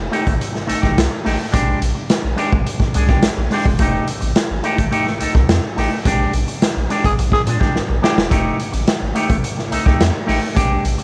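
A round, deep analog bass opens this funky, energetic excerpt in F mixolydian at 106 BPM, joined at once by a gritty, saturated garage drum kit with a punchy kick and an up-front envelope-filtered electric guitar in spring reverb over a rootless F9 and a Bb13 chord, before a band accent from 6.1 seconds brings a brief growling, breathy tenor saxophone note at 7.1 seconds and a drum fill.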